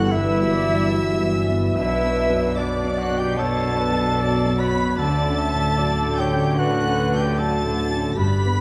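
Cinematic, hopeful and tender at a rubato 75 BPM, this short excerpt sets a rich chamber violin section, bowed sul tasto with light vibrato, on the melody high above a lush, distant second violin section, a hollow silver concert flute and a solo oboe carrying second lines, while a smooth, long-sustaining grand piano and a soft-attack viola section accompany, a roomy French horn section holds sustained chords, and cello and double bass sections anchor the bass through Emadd9/G, Bm7 and Dmaj7, set in a moderate scoring-stage reverb with a dark, warm production.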